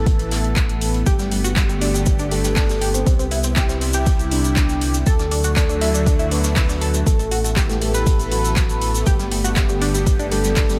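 A straight pulse drives this hopeful, euphoric progressive house excerpt, anchored by an overdriven, deep electronic kick placed up front, with a deep house drum kit adding handclaps and metallic hats that pump with the sidechain. A very quiet, loose indie drum kit sits underneath with a fat, gritty snare and hi-hat, while from 1.1 seconds a grainy, vintage tube shaker joins the groove. A round analog bass holds the low end with a dark, sine-and-sawtooth tone that breathes with the sidechain. Above it, a lush, detuned supersaw pad sustains chords through a phaser, moving from Asus2 to Gadd9, Cmaj7 and D before returning. Also entering at 1.1 seconds, a tight, driving sequenced synth spins wave-folded arpeggios through chorus, phaser and delay. A soft octave-layered lead carries the melody with a full triangle-and-sub-octave tone, touched by vibrato, chorus and analog delay, all set in light small-room ambience.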